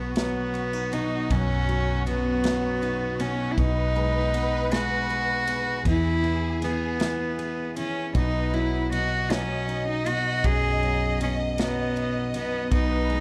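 In a slow, swaying 6/8 at 53 BPM, this romantic pop ballad excerpt in B major moves from B through G#m/B and E back to B. A clear, earthy solo cello sits up front with the melody, its light vibrato and airy bow touched by slapback echo, while a rich, distant violin section carries a second line above it and an intimate grand piano with audible action noise and deep bass supplies the accompaniment. A very quiet, full-bodied acoustic guitar picks arpeggios, a round, foam-muted electric bass anchors the low end, and a polished country drum kit with punchy kick, snare and ride enters at 0.2 seconds, all set in a small, dark room sound.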